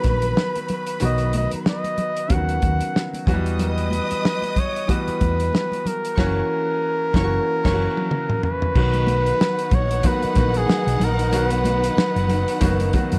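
Warm, lush 1970s-style soul at 93 BPM in B major, swung on the sixteenths, opens with a clear flugelhorn melody up front, its notes scooped and lightly vibratoed, over expressive bowed strings, baby grand piano accompaniment, a round, punchy hollow-body bass, a tight soul drum kit with a fat snare and dark cymbals, and damped, high-tuned congas in the background, as the band hits an accent on F#7 at 6.2 seconds and drums and piano fill into a Bmaj7 arrival at 8.8 seconds in this dry excerpt.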